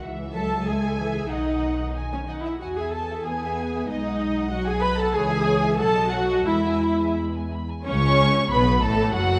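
Up front and soft in attack, the muted viola section carries the accompaniment in this spirited, cheerful classical-period movement for string orchestra, cut from a longer piece and played in 2/4 with a rubato feel. One violin section sings the melody while a close, lush second violin section adds a second line, and a smooth-topped cello section joins the double bass section on the bass, every section bowed con sordino with vibrato for a dark, veiled colour. Moderate scoring-stage reverb surrounds the ensemble, and at 7.9 s the music moves into a new section over an A/C# chord.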